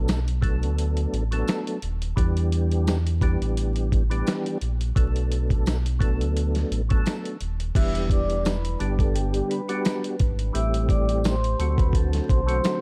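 A gritty, compressed sampler-style drum kit sits up front in this dark, reflective boom-bap hip-hop excerpt, its thumpy kick and medium-tuned snare joined by hi-hat and crash at 86 BPM in 4/4 with a light 16th-note swing in E minor. Beneath it, a deep, full sine sub bass with an added octave holds the low end, while a mellow, round tonewheel organ with percussive attack, chorus vibrato and a slow rotary speaker plays accompaniment through a cassette-tape coloring and filtering that softens its edges. A jingly acoustic tambourine sits very quietly in the background. At 7.8 seconds the second section opens as a metallic, ringing vibraphone played with soft mallets takes the melody, airy and touched by slow motor vibrato and tape echo, and at 8.6 seconds a moody analog pad slips in underneath with slow-attack, very quiet sustained chords. The harmony moves from Bm7 and Em7 into a climb through Gmaj7, Am7 and D7, all wrapped in a dark production with vinyl crackle and digital ambience.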